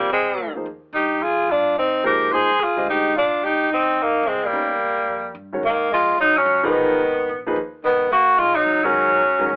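Heard through a telephone-like filter and moderate studio reverb, this cool, intense modal jazz excerpt swings at 217 BPM in F dorian, with a clear tenor saxophone leading the melody up front with scooped notes and vibrato, a breathy, whispered alto saxophone voicing a subtoned second line, a warm baby grand piano accompanying with short sustain, and a woody pizzicato upright bass in the background, before the harmony moves to G# dorian at 5.6 s.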